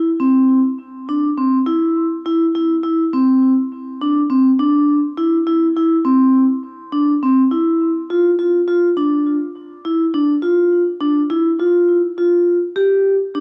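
Progressive instrumental excerpt in an intricate, tense 5/8 at 206 BPM, where a solo vibraphone played with medium hard mallets, motor off, sits up front with a metallic, ringing yet dark and smooth tone, colored by cassette tape and analog delay effects in a small room with light reverb, its home-cassette sound dulled above 10.4 kHz, shifting into a new section at 11.0 seconds before the cut at 13.4 seconds.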